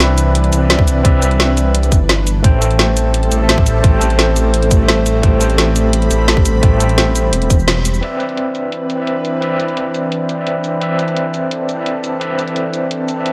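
Warm and dreamy, this liquid drum and bass excerpt moves at 172 BPM in C major, drifting between Cmaj9 and Am7 chords as an overdriven, barky electric piano with medium tremolo and digital delay plays accompaniment over a lush, thick unison pad that pumps with sidechain and shimmers with chorus and phaser. Up front, a deep, rumbling detuned saw bass and a tight electronic kick drive the drop until the bass cuts out at 8.0 s, just after a band accent at 7.7 s. The drum kit's woody snare, metallic hats and shaker run throughout under low-pass filtering, all set in light reverb.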